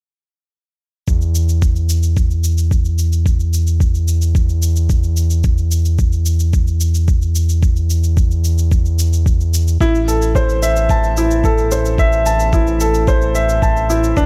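Intimate and hypnotic, this piano and strings electronica fragment moves at 110 BPM in a straight 4/4, opening at 1.1 s with a muffled, thumpy, pitched-down kick drum, a tape-warm electronic shaker recorded in a large room, and a round, deep analog bass whose sawtooth-and-sine tone with ring modulation pumps against the sidechain. At 9.8 s a clear, woody upright piano riff with delay enters over an A minor chord, sitting up front beside the bass and kick. The overall sound is dry and close.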